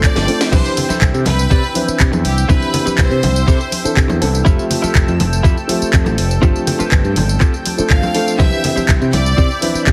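Through a heavily compressed, radio-style sheen with light digital ambience, this feel-good, groovy nu-disco excerpt in C major moves at 122 BPM in a straight 4/4: an up-front, gritty, thumpy sampler kick and a layered house kit with cracking snare, handclaps, hi-hat, tambourine and crash drive the groove beneath a punchy fingered electric bass, ringing background congas and a clean, picked electric guitar riff with subtle chorus. A dark, boxy grand piano and a lush, warbling detuned unison pad with sidechain pumping fill out the harmony, while a biting bowed violin section with tape echo carries the melody, the violins falling away at 4.2 seconds and returning at 7.9 over chords that move from G9sus4 through Cmaj7 and Fmaj9.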